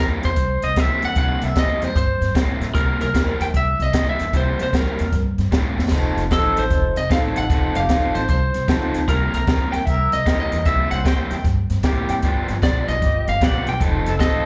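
A swung shuffle in four sets a laid-back, gritty electric blues groove, carried by a compact cocktail drum kit with a punchy kick and high-tuned snare, a woody pizzicato upright bass and a dark, overdriven garage guitar riff. Up front, a bright, twangy lead guitar with slapback echo plays the melody. After a drum fill at 5.7 seconds, a mellow, vintage horn section adds stabs in the background from 6.7 seconds, and a slightly broken-up second guitar with harmonic tremolo slips in a brief line at 11.8 seconds, all heard as a live club gig through the venue's PA with light reverb.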